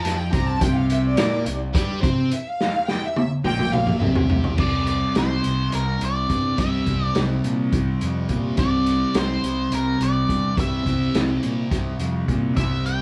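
A double-tracked, phaser-swirled fuzz guitar riff sits up front in this hazy, trippy psychedelic rock excerpt in 7/8 at 210 BPM in C mixolydian, over round, overdriven fuzz bass and a muffled, lo-fi vintage drum kit with a drum fill from 2.6 seconds, while a bowed string section with vibrato and portamento holds sustained chords at the start and briefly returns near the end, and a dark octave-fuzz lead guitar takes the melody from 4.6 seconds, all played live in one room with moderate studio reverb.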